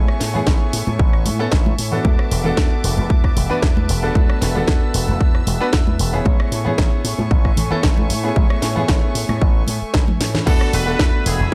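Sunny, feel-good nu-disco at 114 BPM in E mixolydian, built on an up-front, punchy electronic kick, a cracking overdriven house kit, background bongos and congas, a bright enveloped slap bass, a vintage grand piano with tape echo and sidechain pumping, and floating, dark bowed strings, until a drum fill at 10.1 seconds leads to a drop at 10.5 seconds where a distant, nasal muted trumpet section enters over an E7sus4 chord.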